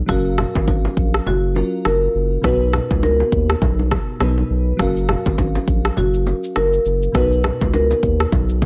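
A crystalline, chorused FM electric piano and a thick, saturated sub bass open this joyful, breezy afrobeats excerpt with a swung sixteenth-note feel, joined at 0.1 seconds by a close-miked marimba melody carrying tape echo, an up-front deep house kit of deep kick, rim click and shaker, and soft-handed congas and bongos from a small room, with a break running to 4.8 seconds as the chords alternate between F#maj7 and Bmaj7 in a dry mix.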